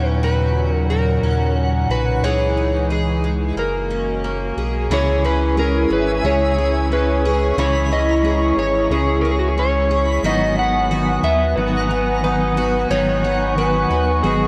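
Dream pop at 90 BPM with a dreamy, ethereal mood, this excerpt sets a dark, slightly broken-up electric slide guitar melody over a round sine sub bass, a bright, octave-doubled twelve-string acoustic playing picked arpeggios with tape echo, and a nostalgic, detuned tape-like pad holding sustained chords. A faint twinkling granular texture with an octave-up shimmer sits in the background from 0.9 seconds, and a clean, dark electric guitar with harmonic tremolo joins the accompaniment at 4.9 seconds as the harmony moves from D#m7 toward C#m and G#m7. The whole mix carries a moderate shimmer reverb and the worn, warbling pitch drift of old cassette tape.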